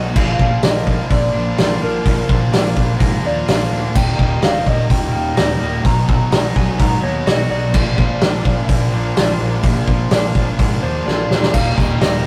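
A rough rehearsal-room sound with warm saturation and moderate room ambience carries this hazy, blissful shoegaze and dream pop fragment at 126 BPM in straight 4/4, where a roomy, up-front indie drum kit with dark cymbals and a tight kick drives a thick fuzz guitar riff, a crunchy overdriven guitar riff, clean twangy guitar arpeggios and a growling overdriven bass beneath a round, chorused FM synth lead melody with vibrato, moving through Bb, Eb and Bmaj7 before a drum fill at 11.1 s, a second double-tracked overdriven guitar riff from 11.5 s and a faint jingly tambourine at 11.6 s.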